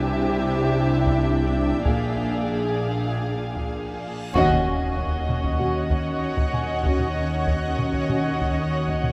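Uneasy and eerie, this cinematic suspense cue, cut from a longer piece, sets dark symphonic violins on a floating sul tasto melody over a second line from a warm studio violin section, with woody violas, distant cellos and double basses bowing the low end, background French horns holding chords, and a blurred, detuned granular pad drifting above, while a very quiet grand piano adds polished texture. A close, dry taiko ensemble struck with hard sticks joins at 1.1 seconds. A reverse cymbal rises at 4.1 seconds into a huge, dark impact and a band accent at 4.3 seconds, where the harmony settles into a minor chord.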